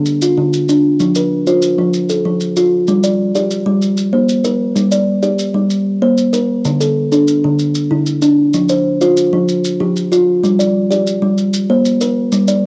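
A boxy, homemade cassette sound with a touch of small-room reverb frames this brief excerpt of Southern African traditional music, a rippling mbira-style interlocking cycle in 12/8 at 127 BPM, pitched in G equiheptatonic tuning with A4 at 442 Hz. An up-front, woody kalimba spins plucked thumb-struck arpeggios from D3 to D5 with a solid-board, cassette-tinged warmth, moving through Dm and F before shifting at 2.9 seconds into a passage that alternates G5 and Bbsus2, passes through D5 and F5, and returns to G5 and Bbsus2. Grainy, mellow maracas sit quietly beneath it in the same small room.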